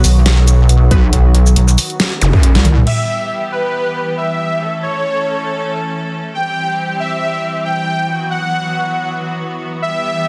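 Aggressive and menacing, this heavy wobble dubstep excerpt at 138 BPM in a half-time feel opens on a drop where saturated, up-front pulsing pluck wobble bass, a square-wave wobble bass entering at 0.9 s, a punchy electronic kick, an overdriven dubstep drum kit with a deep snare, a faint orchestra-hit-like synth stab and a brief electronic zap crash together under distant, biting symphonic strings with sidechain pumping, before a drum fill hands over at 2.9 s to a smooth, full-bodied supersaw melody with tape echo over those strings through a B, Em, A, C and Bsus4 progression, all in a dense, heavily limited modern mix with light digital ambience.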